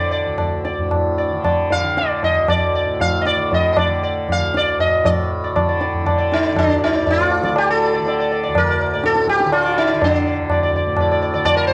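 A plectrum-plucked sitar sits up front in this short cut from a longer Hindustani classical piece, its round, buzzing tone ringing with sympathetic strings as it carries a longing, solemn melody between D4 and F5. Beneath it, a softly plucked tanpura holds a low, shimmering drone, both instruments coloured by cassette tape and plate reverb. A low-tuned tabla with a short ring comes in at 0.4 s, its acoustic sound carrying a small-room quality. The music moves in an uneven 5/4 and gradually speeds up throughout, with a new section beginning at 5.1 s. The whole performance has the character of a home cassette recording set in a moderate studio reverb.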